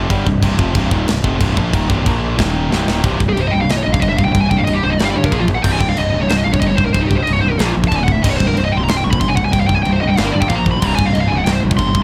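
Two bright, picked distorted guitars play a riff in the background over growly, fuzz-laden bass and a tight, up-front metal kit with a big-room sound, bright cymbals and a tight kick, and after a drum fill at 2.7 seconds a dark, high-gain lead guitar enters at 3.3 seconds for a solo in this heavy, relentless metal excerpt.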